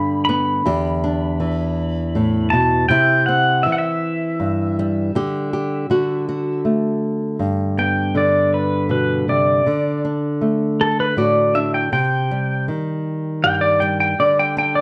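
In an unhurried 3/4 at 80 BPM with a straight feel, this hopeful, nostalgic folk passage in G major sets a small, warm, fingerpicked nylon-string guitar under a bright, twangy pedal steel guitar. The pedal steel carries the melody with fingerpicks, slide and volume swells, its clean, compressed tone doubled by a slapback echo and taking a solo from 7.4 seconds, where a borrowed C minor chord adds a wistful shade. Both guitars sit up front, caught by close, detailed microphones in a moderately reverberant large studio.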